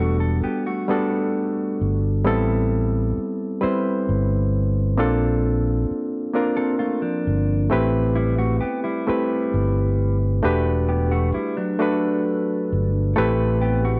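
A round, punchy fingered bass with transformer saturation and a reedy, barky electric piano open this sultry, yearning slow R&B excerpt in six-eight, both sitting up front. A dark, compressed electric guitar adds a soft second line, dropping out at 2.0 seconds and returning at 6.6 seconds, over minor-ninth and eleventh chords that turn through a major-seventh colour. Light reverb and a worn cassette-tape warble give the whole mix a drifting, aged haze.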